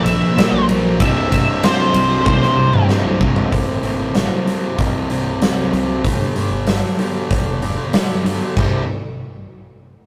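A rough rehearsal-room recording with tube saturation and a moderate booth ambience frames this restless, anthemic stretch of quiet-loud alternative rock, cut from a longer piece. An octave-fuzz lead guitar sings a brief, warm melody until 2.9 seconds over an up-front, bright fuzz guitar riff and a very quiet, sludgy overdriven guitar that drops out at 3.5 seconds. A growly, punchy fingered bass drives underneath while a huge arena drum kit with a punchy kick and bright cymbals plays a fill from 2.3 seconds.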